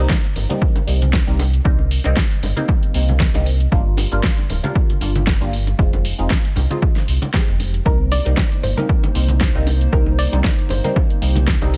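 A punchy, overdriven electronic kick sits up front with a fat-snared, hi-hat drum kit, hard-hand bongos and congas, and a deep sine sub bass pumping under muted, detuned dub chord stabs drenched in phaser, chorus and delay, in a smooth, deep house excerpt over Cm7, Gm7 and Fm7, where a soft, round pluck melody and a hollow, flute-like pad enter at 7.9 seconds.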